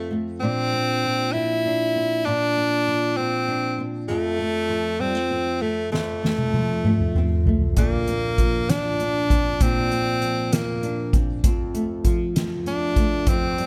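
Light reverb and a small-room ambience frame this short, romantic six-eight pop ballad, which is cut from a longer piece and sways gently at 65 beats per minute, counted in dotted quarters and tuned to A4 = 439 Hz. An edgy, punchy tenor saxophone carries the melody up front as a forceful, jazz-style solo, shaping scooped notes between A3 and E4. Beneath it, a dark, double-tracked flamenco guitar, fingerpicked and close, supplies the accompaniment across a range from F2 to D4, moving between Bbadd9 and F. At 5.9 seconds a soft-mallet acoustic drum kit enters with a fill that runs to 7.8 seconds, bringing a fat snare, boomy kick, hi-hat and toms with a big-room character. The drums then stay forward in the mix alongside the saxophone and guitar through to the end at 13.7 seconds.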